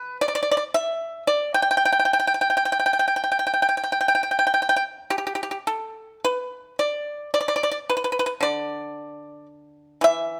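Close, detailed microphones and a light reverb frame this short excerpt of Chinese traditional solo plucked-string music, pastoral and elegant in mood. A lone pipa, played with fingerpicks and placed up front, sounds mellow yet percussive as it moves freely in rubato at roughly 52-57 BPM in 4/4, ranging from D3 to G5. At 6.2 seconds the passage shifts into a new section that carries on until the cut at 10.4 seconds.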